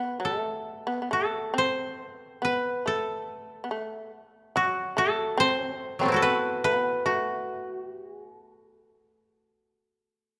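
A dry, woody koto carries the melody up front through this austere, solitary fragment of Japanese chamber music, while a buzzing, percussive shamisen adds a second line beneath it, both sounding throughout in a free, rubato 4/4 within a moderate concert-hall reverb.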